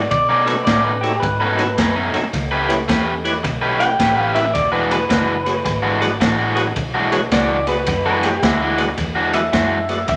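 Gritty and laid-back, this electric blues shuffle in E mixolydian swings at 108 BPM, with a brilliant, overdriven picked guitar riff and a slightly broken-up, lo-fi second guitar line with warbly pitch drift over round, foam-muted fingered bass, saturated breakbeat drums with dark cymbals and a tight kick, and a fat, percussive tonewheel organ through a slow rotary speaker entering at 0.5 seconds, all moving through B9, A9 and E9 chords in a large, wet studio reverb.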